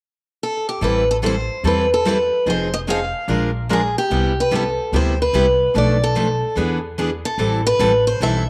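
A small room with moderate spring reverb frames this short cut from a swinging, virtuosic jazz manouche tune at 146 BPM in A minor, with swung eighth notes. A bright, boxy parlour guitar with finger squeak carries the melody up front from 0.4 seconds, its lines touched by slapback echo. A full-bodied dreadnought guitar and a concert guitar set in the background pick the accompaniment over chords moving from Am9 through Fm7, Bb7, Cmaj7, Bm7b5 and E7 to Am7, while a woody, thumpy pizzicato upright bass on gut strings anchors the low end up front from 0.8 seconds.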